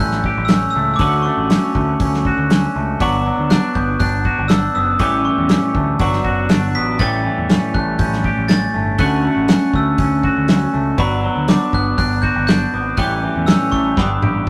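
Indie rock with a wistful, carefree mood, this excerpt moves at 120 BPM in a straight 4/4 and sits in A mixolydian. A glockenspiel played with hard plastic mallets carries the melody high above the band with a sparkling, bell-like ring. Beneath it, a clean twelve-string electric guitar plays a bright, compressed riff, while a twangy electric guitar, fingered and bathed in spring reverb, adds a second riff alongside it. A growling, overdriven picked bass anchors the low end, and a loose indie drum kit enters at 0.1 seconds, sitting up front with a tight kick, a medium-tuned snare and a rolled-off top, before closing with a fill from 14.0 seconds. The chords cycle through A7, Dmaj7 and Gmaj7 in a rough rehearsal-room recording with a short, wet booth ambience.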